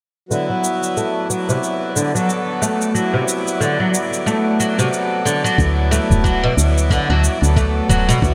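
A reedy pedal harmonium with sidechain pumping and delay, bright double-strung oud arpeggios roughened by 12-bit sampler grit, delay and a filter sweep, and a tape-warm shaker open this earthy, peaceful organic downtempo passage in D major at 91 BPM with a swung 16th-note feel; an airy, wind-like tuned noise texture drifts in the background from 1.2 s, a round, woody FM bass with sidechain pumping and a soft electronic kick arrive at 5.6 s, and a small, very quiet udu joins at 6.1 s, inside a lush hall reverb and a bright 1980s-style digital production.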